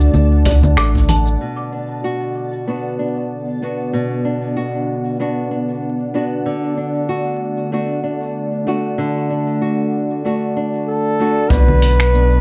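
Crackling with vinyl surface noise in a small room, this playful, delicate folktronica excerpt at 95 BPM sets a fingerpicked nylon-string guitar, up front with a low-pass filter and delay, over a warbling, detuned tape-like pad on D and Bm chords; a round sine sub bass, muffled sampler-style drums with cabasa, congas, snaps and hi-hat, a boomy background kick and a woody kalimba appear only at the opening and the close, a reversed, bright swelling texture drifts through the first 1.4 seconds, and a jazz-style flugelhorn with vibrato and scooped notes sings briefly at the start and again from 10.9 seconds.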